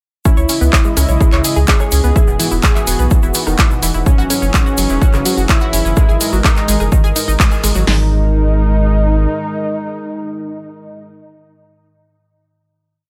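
Up-front analog drums ring in a digital ambience in this dark, cinematic melodic techno piece in G# minor at 126 BPM. Two punchy drum machines, both re-recorded in a small room, carry it: one drives a four-on-the-floor kick with snare and open hats, the other adds claps, rim clicks and programmed hats, while a grainy egg shaker plays hand-played sixteenths in the background. A round, deep analog bass gallops in sixteenths with sidechain pumping beneath a brassy, fat synth brass riff with chorus, vibrato and tape echo, a detuned sawtooth pad holding sustained chords, and a pluck whose 12-step arpeggio loop drifts against the bar through C#m, E, F#5 and G#5, until a band accent at 7.4 seconds. The drums, shaker and pluck then fall away, leaving the brass, pad, the bass (which lingers until 9.3 seconds) and a very quiet, warbling drone (present since 1.9 seconds) on a final chord that lasts to 11.7 seconds.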